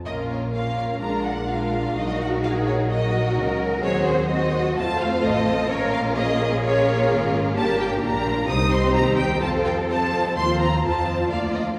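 A quick 128 BPM pulse in 4/4, stretched by rubato, drives this stormy, dramatic classical-period movement for string orchestra in Bb minor, cut from a longer piece and moving through chords such as Bbm, Bb7, Cdim/Eb and F7/Eb. Violins carry a smooth, up-front melody over a second violin line with soft attacks, while violas add lush, focused accompaniment and double basses anchor the bass with light vibrato. A warm cello section joins the bass role at 1.0 s, and a church reverb with a long 3.6 s tail places the ensemble in a resonant hall.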